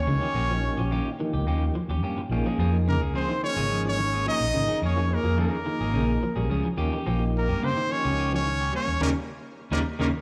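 A straight 4/4 afrobeat groove at 107 BPM drives this intense, hypnotic cut from a longer piece, captured live through a club's PA with light reverb and the room's ambience around it. A dark, round fingered electric bass sits up front, while a slightly broken-up, twangy electric guitar with ensemble chorus plays arpeggios and a clean, picked electric guitar with slapback echo adds stabs from 0.2 seconds. A tonewheel organ in the background supplies accompaniment, its key click, chorus vibrato and fast rotary speaker giving a clear, warm texture. On top, a bright, punchy, close-miked trumpet carries the melody with slapback echo, and a trombone with metal mute plays a second line, buzzy, breathy and whispered, set distant and roomy in the background. The harmony moves from Eb7 to Bbm7 and back to Eb7, and the band hits an accent together from 9.0 seconds to the end.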